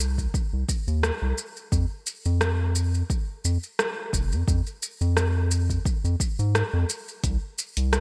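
A bright, dry, 1980s-style digital sound frames this short, wistful and relaxed sunset chillout cut, built on a lightly swung 16th-note feel in 4/4. A round, deep analog bass with a nasal, dark filter pluck sits up front and sustains throughout, alongside a layered deep house kit of hi-hat, rim click and shaker, overdriven and given gated reverb. An overdriven electronic kick, re-recorded in a small room, enters at 0.2 seconds and stops at 7.4 seconds.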